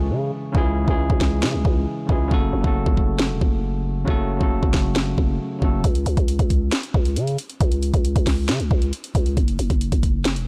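A dry, blown-out and overdriven mix gives this short cut from a longer trap hip hop track a harsh, saturated edge. The mood is melancholic and dark, set at 136 BPM in 4/4 with a half-time feel, as the harmony moves from C#m to F#m during an opening break. A very quiet, silvery guzheng, plucked with fingerpicks, rings out only briefly at the start, while a bell-like, bright tine electric piano plays clean, direct accompaniment through a low-pass filter until 5.9 seconds. Underneath, a growling, buzzy 808-style bass with a fast attack and decaying tail sits up front for the whole passage. The electronic trap drum kit enters at 0.5 seconds, also up front, with a knocking kick, sharp snare and metallic hi-hats driving the groove.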